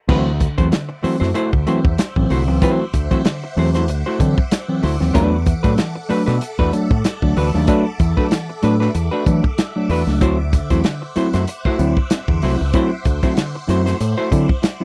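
A strutting 95 BPM groove in 4/4 drives this energetic funk excerpt, its 16th notes swung at 56%, with a dry, lo-fi, muffled soul drum kit laying down a tight kick, a medium-tuned snare, dark cymbals on hi-hat and crash, and a rolled-off top. Up front beside the drums sits a growling fingered electric bass, overdriven, round and punchy, ranging from A1 to E3. A worn tine electric piano, slightly out of tune, punctuates the groove with clean stabs in its middle register, while a dark hollow-body jazz guitar plays picked, clean accompaniment. Sitting lower in the mix, a bright, vintage string machine holds sustained sawtooth chords up to D6, its slow attack and long release made swirling by ensemble chorus and phaser. The harmony moves from D9 to E9sus4 at 5.2 seconds and returns to D9 at 10.2 seconds. The sound is close and dry, like a 1970s studio recording with little reverb.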